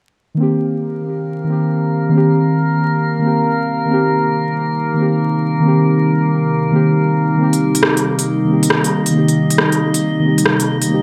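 Muted, felt-like synth keys sit up front from 0.3 seconds, dark and intimate with chorus and delay, over a warbling, nostalgic tape-like pad that holds a Cm7 chord through a filter sweep. This rainy, wistful future garage excerpt in C minor moves at 137 BPM with a swung 4/4 feel, and a glassy, drifting harmonics texture adds calm overtones. A crisp garage kit of hi-hat and rim click arrives only at 7.5 seconds, all wrapped in vinyl crackle and a lush hall reverb.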